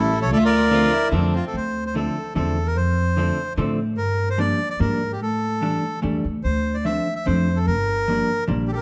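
A reedy, bright bandoneon leads this short excerpt of a whirling, nostalgic musette waltz, its melody sitting close-miked, dry and up front across the whole passage. A smooth, bowed violin with vibrato adds a rich second line only in the opening 1.5 seconds before dropping away. Beneath, a clean, picked hollow-body electric jazz guitar supplies compressed, dark-toned accompaniment, while a pizzicato upright bass with steel strings gives a woody, growly low end that sits prominently in the mix. The harmony moves through minor-seventh, sixth and suspended dominant chords, cycling from Dm7 through F6, Gm7 and A7sus4 and back again. Close, detailed microphones capture the players in a moderate recital hall ambience, lending the lilting, straight three-beat pulse an intimate yet airy setting.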